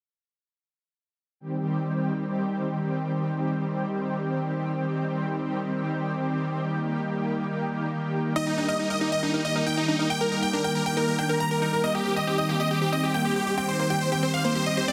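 Trance at 138 BPM in C minor, this soaring, bittersweet passage is cut from a longer piece. A silky, string-like analog pad carries sustained chords from 1.4 seconds, up front with ensemble chorus and a filter sweep, as the harmony moves from C minor to E-flat and back to C minor. At 8.4 seconds a huge, euphoric supersaw lead takes the melody, its detuned unison sawtooth tone sitting bright and compressed at the front with a phaser. Joining at the same moment, a round analog pluck plays arpeggios in the background with chorus and tape echo, while a grand piano adds a second line with long sustain, also set back in the mix. A lush hall reverb surrounds the parts, and the master is dense and heavily limited in a modern style.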